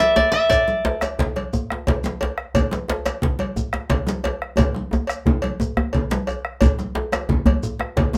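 This West African drum ensemble piece is an earthy, festive excerpt cut from a longer performance, moving in a 12/8 feel. A woody koto, played with fingerpicks and placed up front, carries a brief melody that sounds only from the start until 2.1 seconds. Beneath it, a deep djembe struck with soft hands sits near the front, while a second djembe sits farther back with a tight, cracking, compressed and saturated edge. Bright, thin-skinned congas played with hard hands add a damped, vintage, band-limited color. A round, close bombo stays in the background, joined by a metallic, saturated cowbell and a grainy, mellow shekere. A drum fill runs from 4.6 to 6.6 seconds and leads into a brief new section, all heard in a small room ambience.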